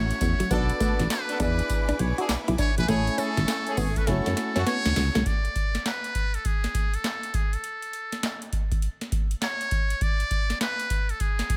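New jack swing R&B at 101 BPM with a swung sixteenth feel, punchy and bouncy, where a buzzy, breathy muted trumpet carries the melody up front over a booming analog drum machine with a deep kick, crisp snare, metallic hats, handclaps and tambourine. For the first 5.3 seconds a polished grand piano, a rich bowed string section in the background, a bright, clean electric guitar riff with subtle chorus, a round FM bass and distant horn stabs move through F#m7, Bm7, E7 and Amaj7 before a drum fill at 4.1 seconds. From 5.3 seconds the chords drop away, leaving only the trumpet and drums in a small room ambience until the cut at 11.6 seconds.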